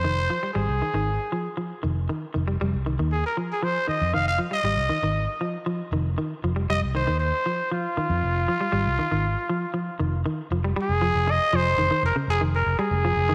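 A raspy, growling trumpet with light vibrato carries the melody from the very start of this intense, driving afrobeat excerpt at 118 BPM in F minor. It sits close-miked and up front over clean, bright arpeggios from a picked semi-hollow guitar and a round, dark fingered bass, all in a moderate plate reverb. The harmony holds on F7 until 10.8 s, when the piece moves into a new section on Fm7.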